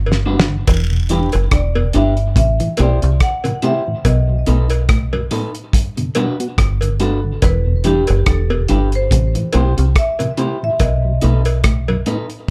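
A laid-back 71 BPM roots reggae groove in E minor with a lightly swung sixteenth feel opens on a marimba melody with tape echo and plate reverb and a deep, round, foam-muted dub bass up front, as a drum fill from a cloth-damped, thuddy kit with a fat snare and tight kick comes in, joined by a mellow flute-like tonewheel organ with slow rotary speaker in the background, a slightly broken-up picked electric guitar with tape echo, a clean semi-hollow guitar playing arpeggios, and cowbell and jawbone-type rattle, all moving through a serious Gmaj7–Em7–Am7–B7 cycle in this short cut from a longer piece.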